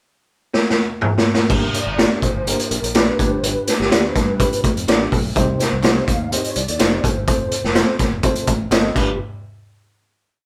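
A raw, gritty garage drum kit with a boomy kick and a backbeat groove anchors this passionate, driving 1960s-style soul piece, opening with a fill at 0.5 seconds before a barky, lightly overdriven electric piano with fast tremolo and a growly, syncopated fingered bass enter at 1.5 seconds, joined soon after by a soft, flute-like tonewheel organ playing call phrases in the background and a slightly broken-up guitar chopping quietly on the backbeat, with tambourine and handclaps arriving at 5.4 seconds, all played live in one room with light reverb.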